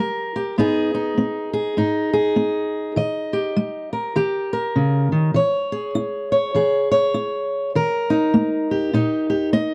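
A fingerpicked steel-string acoustic guitar plays alone and up front in this haunting, reflective folk excerpt, moving at 100 BPM in 4/4 with a lightly swung feel through G# harmonic minor chords from G#m to D# and C#m/E, its concert tone set in light reverb and a dark production.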